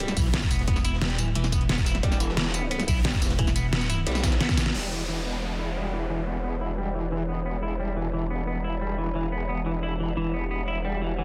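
A dense, heavily limited modern master with light reverb carries this mechanical, aggressive dark technical drum and bass cut at 177 BPM in E minor, where bright, twangy clean electric guitar arpeggios with chorus, delay and sidechain pumping ride over a growling, detuned growl bass and a heavy pulsing pluck wobble bass, driven by a punchy electronic kick drum, an up-front dubstep drum kit with a deep snare and a very quiet, gritty crunchy breakbeat drum kit, until a drum fill from 4.2 seconds and a band accent at 4.7 seconds hand over to an Emadd9 passage in which a downlifter sounds, a filter sweep runs on the guitar, and a very quiet, moody dark analog pad enters at 5.6 seconds.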